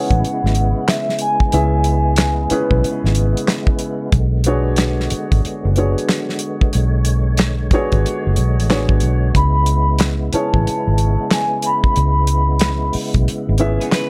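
Sultry and late-night, this short excerpt from a longer R&B and neo-soul piece sits at 92 BPM in 4/4 with a swung sixteenth-note feel, moving from C#m7 to Bm69 and back to C#m7 at 9.3 seconds. A vibraphone played with soft mallets carries the melody in two phrases, at the opening and again from 9.4 seconds, its ringing, close-miked tone shimmering with a medium motor vibrato. Beneath it, a dark baby grand piano supplies mellow accompaniment with short sustain, while a tonewheel organ holds fat, lightly overdriven chords with key click, chorus vibrato and a slow rotary speaker. A round, foam-muted fingered electric bass and a damped 70s drum kit sit up front, the kit dry with a fat snare, tight kick, hi-hat and handclaps. At 13.8 seconds an electric guitar through a small old amp slips in with a slightly broken-up, picked second line touched by subtle chorus, all set in light reverb.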